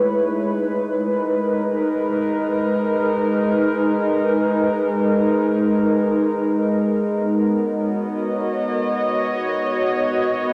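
Ambient music in free time and G# minor, tuned slightly flat at A4 = 439 Hz, this short passage cut from a longer piece feels serene and melancholic. A single warbly, tape-like pad plays alone for the full 10.5 seconds, spanning G#3 to D#5 and sitting up front in the mix. Its detuned sawtooth and triangle tones have a slow attack and long release, sustaining into a mellow, nostalgic haze treated with chorus, built-in reverb and a diffuse ambient delay. The harmony rests on G#m before moving to Badd9 at 7.1 seconds. The whole recording is bathed in a huge, wet ambient reverb and carries the worn, wavering pitch drift of old cassette tape, giving it a lo-fi character.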